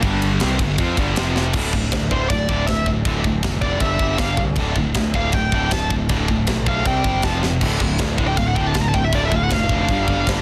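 Heavy metal in D minor at 158 BPM, this dark, epic fragment of a longer piece drives forward in a straight 4/4. A tight, up-front acoustic drum kit with a big-room sound anchors it, its bright cymbals including china, crash and ride over a tight kick and a medium-tuned snare given a touch of soft clipping, with fills at 1.4 and 7.4 seconds. Beneath it, two bright, high-gain distorted rhythm guitars play the riff in the background throughout, joined at the opening and again from 7.6 seconds by a darker, double-tracked overdriven guitar, while a growly, direct-sounding picked bass sits underneath. From 2.1 seconds a high-gain lead guitar with a warm tone and tape echo takes a solo in its upper register, moving over chords that shift from G5 and F5 into Dm, G5, D5, C5 and back. Light reverb surrounds a dense, heavily limited modern master.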